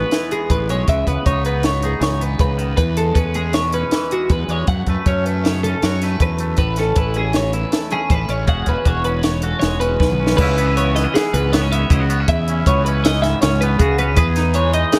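A straight 5/4 pulse at 158 BPM drives this playful, intricate passage of math rock and midwest emo, cut from a longer piece. A compact cocktail drum kit sits up front with a punchy kick, high-tuned snare and dark cymbals, while a fuzz fingered electric bass adds round, overdriven low end. A bright twelve-string electric guitar spins compressed arpeggios through lush chorus as the twangy electric guitar supplies clean, picked accompaniment over chords moving from Amaj9 through C#m9, E6 and F#m7. A drum fill at 10.0 seconds leads into a new section at 10.4 seconds, and a moderate plate reverb soaks the whole mix in a dreamy haze.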